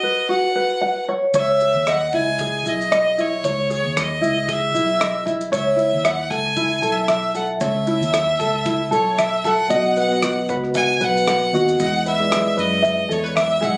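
Carefree and easy-going, this swung acoustic pop fragment opens with an airy, intense violin melody with vibrato, played close over a thumb-plucked tenor ukulele; a dark, round, foam-muted electric bass and a cloth-damped, thuddy kit of tight kick, rim click and shaker join at 1.3 seconds, and a barky, reedy electric piano with light overdrive enters at 9.7 seconds, the whole caught on a phone in a club's light reverb.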